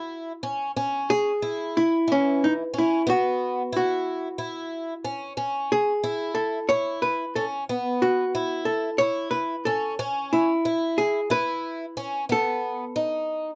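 A dry, close 1970s-style studio sound with light reverb frames this bright, driving progressive instrumental, cut from a longer piece and moving in a straight 7/8 at 182 BPM counted in eighths. Up front, a clean, dark hollow-body archtop guitar carries the picked melody, while a boxy, shimmering twelve-string acoustic, octave-doubled and also up front, picks arpeggios beneath it throughout. The harmony circles through Bsus4, E6, C#m, C#m7 and a closing B7.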